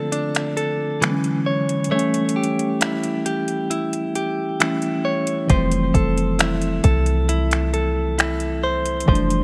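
A slow, straight 4/4 pulse of finger snaps, metallic hi-hat and a soft kick sets a dreamy, smooth contemporary R&B mood in this short cut from a longer piece. The electronic, produced drum kit sits up front with a gritty overdriven edge, while a mellow tine electric piano, heard as through its built-in speakers, supplies clean, warm chords underneath. A bright, compressed clean electric guitar, recorded direct with a scooped tone, plays picked arpeggios up front, trailed by digital delay. The harmony moves through Bbmaj9, E13 and A7 during an opening break, then settles on Fmaj7 at 5.5 s, when a soft 808-style bass enters with deep, round, sine-like notes that strike quickly and decay into darkness. Light reverb gives the mix a gentle sense of space through to its end at 9.4 s.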